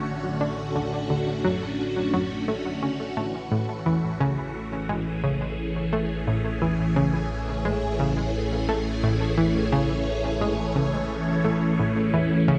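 A straight 4/4 pulse at 87 BPM carries this cosmic, luminous stretch of sequencer-driven ambient space music in A major, a fragment cut from a longer piece, where a round, sawtooth analog pluck riff with a sub octave, 12-bit sampler grit and tape echo enters at 0.4 seconds. Up front, a swirling phased string machine holds sustained Dmaj7/A and Amaj7 chords with ensemble chorus, while beneath it a warbling, mellow analog drone fades in on a low A, its pulse-width modulation giving the bass an evolving shimmer. A wet plate reverb and a dusky cassette tone wrap the whole scene in a vintage haze.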